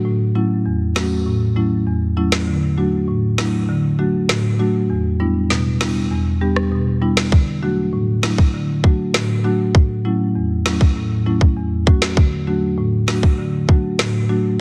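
An up-front marimba with medium mallets on rosewood bars opens this summery, bouncy dancehall excerpt at 99 BPM in D major, cycling through A6, D and Em7, before an electronic island pop drum kit joins at 1.0 s with a tight kick, woody snare, rim clicks, tape-warm colour and vintage 12-bit sampler grit, all set in light reverb and studio ambience under a dense, heavily limited modern master.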